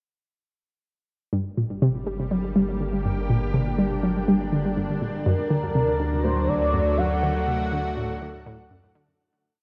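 Drenched in a shimmering reverb with an 8.2-second tail and worn, warbling cassette tape, this short, complete piece of ambient, sequencer-driven space music feels cosmic and hypnotic at 122 BPM in a straight 4/4, set in G harmonic minor. From 1.3 seconds a lush, thick unison pad fades in with detuned sawtooth and square-wave chords under chorus, its slow attack and long release giving the harmony a bright, slowly shifting bed. A round analog bass holds deep, nasal root notes beneath it, while an analog pluck, the most prominent part, repeats a 7-step sequenced riff that drifts against the bar, its snappy filter pluck, noise layer and detuned tone spreading through chorus and delay as a filter sweep moves across it. At 5.3 seconds the harmony moves from G minor to D, and a retro pulse-width lead enters with arch-shaped motif phrases, colored by vibrato, portamento, chorus and delay. The whole piece fades out from 6.6 seconds, closing within its single section.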